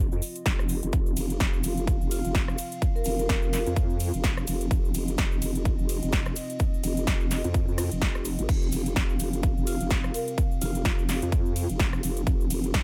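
Bass house at 127 BPM with a 16th-note swing, this gritty, swaggering excerpt rides on a nasal, saturated vowel-sweep wobble bass with chorus and overdrive, pumping under the sidechain alongside a dark, detuned analog pad of sustained chords with ring modulation and a slow attack. A punchy, up-front electronic kick and a big-room dance kit with metallic hats, punchy snare, rim clicks, ride and crash drive the groove, while a grainy cabasa sits close and dry in the background. A ringing vibraphone played with soft mallets, heard through tape echo in a boxy small room, drifts in at 2.1 seconds and again at 9.7 seconds.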